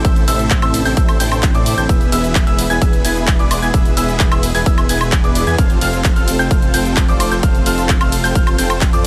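Anthemic and euphoric, this short cut of festival progressive house drives along at 130 BPM in a straight 4/4, moving from A minor to E and then F. A punchy, overdriven electronic kick sits up front from the start, joined by a layered big-room kit of handclaps, hi-hat, ride cymbal, shaker and woodblock with its own overdrive. A huge, thick supersaw riff carries the lead, while a lush, chorused detuned saw bass holds down the low end, both pumping under sidechain compression. High above, a brilliant grand piano with a slightly worn character spins arpeggios through tape echo, pumping along with the supersaw. In the background, a veiled, very quiet string section plays sustained chords con sordino, and the mix stays dry with little reverb.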